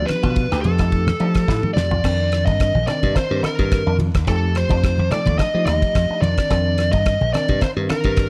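A biting, overdriven lead guitar carries the melody up front in this funky, soaring stretch of electric jazz fusion, cut from a longer piece, over a punchy, foam-muted thumbed slap bass and a damped 70s drum kit with a fat snare and dark cymbals. A clean tine electric piano with ensemble chorus and soft-handed congas sit in the background, while a twangy electric guitar through an envelope filter adds quiet stabs with subtle chorus and tape echo. A drum fill from 1.5 to 2.0 seconds leads into a new section built on Cm9 and F9 chords, all set in a studio reverb with a dark, warm production and a faint mains hum.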